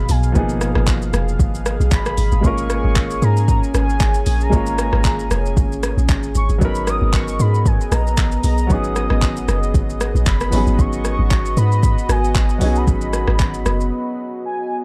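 The deep, round log drum bass sits up front in this late-night, hypnotic amapiano excerpt, its percussive FM tone carrying a noise layer and a fast, decaying attack. Beside it, a layered electronic deep house kit with an overdriven deep kick, handclaps, hi-hat, rim click and shaker drives a 115 BPM groove in 4/4 with a light sixteenth-note swing. A clear, polished baby grand piano supplies the accompaniment, while a smooth, detuned sawtooth pad holds sustained chords, its chorus and sidechain pumping giving it a breathing motion. High above, a velvety synth lead with vibrato, chorus and delay sings the melody over a harmony that moves from G#m69 through A#m7/G# and Bmaj7/G# to C#9sus4/G#. At 13.9 seconds the bass and drums stop for a short break, leaving piano, pad and lead in a dark, dry mix until 14.8 seconds.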